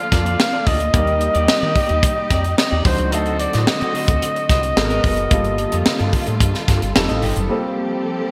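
A vibrato-laden flugelhorn sings the jazzy lead over a concert grand piano with a deep low end and a lush bed of bowed studio strings in the background, opening a breezy, urban slice of polished 1980s jazz-funk pop at 110 BPM. A tight funk kit with a high-tuned snare and gated reverb sits up front beside a dark, round fretless bass with ensemble chorus, while a slightly broken-up, lo-fi electric guitar riff with lush chorus hovers behind. The bright digital production glows in a hall reverb as chords move from Bbmaj7 through D7b9 and Abm9, with the flugelhorn stopping at 6.9 seconds before the cut lands on Gm11.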